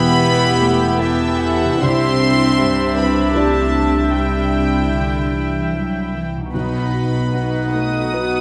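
Set in a moderate recital hall reverb, this cinematic passage, cut from a longer piece, moves in a rubato triple metre with a moving, sorrowful mood over chords of Em, Cadd9 and B. A close violin section carries the floating sul tasto melody, while a distant, rich second violin section, a roomy clarinet and a vintage solo oboe weave second lines. A viola section and a felt-muted upright piano fill in the accompaniment, a tight French horn section holds sustained chords, and very quiet ringing harp arpeggios sit above bowed cello and double bass sections with light vibrato, all sounding through the full 8.4 seconds.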